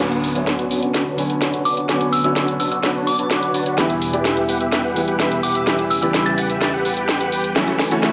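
An up-front house drum kit with a cracking snare, hi-hat and shaker drives this euphoric, emotional stretch of festival progressive house at 127 BPM in B minor, playing a fill throughout a build-up cut from a longer piece. A huge, detuned supersaw riff runs through a filter sweep with tape echo, over a polished baby grand piano accompaniment and a lush, chorused pad holding sustained chords in the background, moving from Bmadd9 to Em to F#m7. A gentle FM bell melody with chorus and phaser floats in at 1.7 seconds and stops at 6.5 seconds, and a background riser enters at 7.6 seconds, all within a moderate hall reverb.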